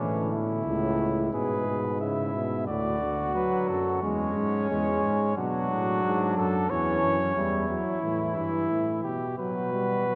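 Set in a cavernous cathedral reverb with a 4.8-second decay, this stately, joyful passage from a longer classical canzona for brass ensemble moves at 89 BPM in a straight 4/4. A dark trumpet with light vibrato carries the second line, a close-miked, warm trombone supplies accompaniment, and an up-front, smooth-topped bass trombone anchors the low end from the opening. At 1.3 seconds a mellow cornet enters with the melody as the imitative writing passes through chords from A to a closing F#sus4/B.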